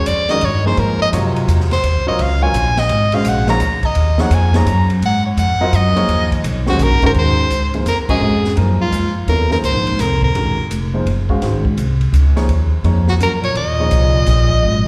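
Modal jazz in Eb dorian, hypnotic and searching, moving at a brisk 169 BPM in a swung 3/4 and cut from a longer performance. An edgy soprano saxophone, up front with vibrato, carries the melody as a solo over the opening seconds, its tone bathed in plate reverb and slapback echo, while an intimate grand piano with audible action noise and short sustain comps beneath it through the same effects. A woody pizzicato upright bass sits forward in the mix, and an open jazz kit with dark cymbals, a high-tuned snare and a punchy kick works across ride, hi-hat, crash and toms. A breathy bass clarinet enters at 6.7 seconds as a subdued second line in the background, with a soft attack and subtone. The harmony shifts between Eb9sus4 and Ab9sus4, the band hits an accent at 8.0 seconds, and a drum fill at 14.6 seconds closes the passage. The sound is that of a live gig heard through the venue's PA, with light recital-hall reverb around the ensemble.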